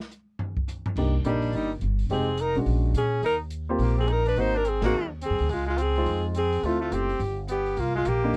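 Small-group swing and bop jazz with a moody, cool air, heard in a short passage cut from a longer piece. An acoustic drum kit opens alone, its dark cymbals, medium-tuned snare and boomy kick sounding smooth and rolled-off in a small room. At 1.0 seconds a woody upright bass, plucked with steel strings and placed up front, joins a natural-sounding baby grand piano comping on rich chords such as Cm9, Ab9 and Dbmaj9. At 1.3 seconds a clear alto saxophone takes the melody with vibrato, while a warm trumpet with light vibrato carries a lower second line, set distant and roomy. The band hits a shared accent at 4.8 seconds, all within a dry, close 1970s-style studio sound touched by light reverb.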